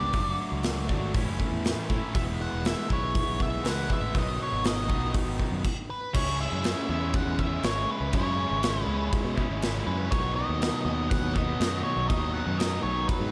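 A big arena sound fills this confident, sunny classic rock passage, with a moderate, lush hall reverb around the band and a touch of small-room ambience, cut from a longer piece. It moves at 121 BPM in a straight 4/4, and the chords step through D/F#, A, E and B before settling on C#m and B in the second half. Up front, a cranked, double-tracked stack guitar plays a bright, overdriven picked riff with spring reverb, while a dark octave-fuzz lead guitar carries the melody in a narrow upper range above it. A picked electric bass adds growly, punchy low end, and an acoustic rock kit drives everything with a boomy kick, a medium-tuned snare, hi-hat and bright crash cymbals. A brief stop from 5.6 to 6.1 seconds breaks the flow before the band returns for the next section.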